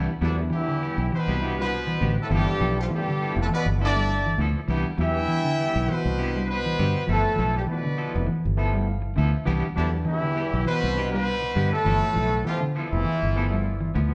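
A punchy, up-front horn section carries the melody in octaves over an intense, hypnotic afrobeat groove that rocks between Cmaj7 and G13, with a clear trombone section in the background and a brilliant solo trumpet adding second lines, a round, foam-muted fingered bass driving underneath, a dark clean electric guitar spinning vibrato-tinged arpeggios, a hollow-body semi-hollow guitar punctuating with tremolo stabs, and a barky, gritty overdriven tine electric piano comping and slipping in fills at 8.3 and 13.3 seconds, all captured as a band playing live in one room with a wet, large studio reverb.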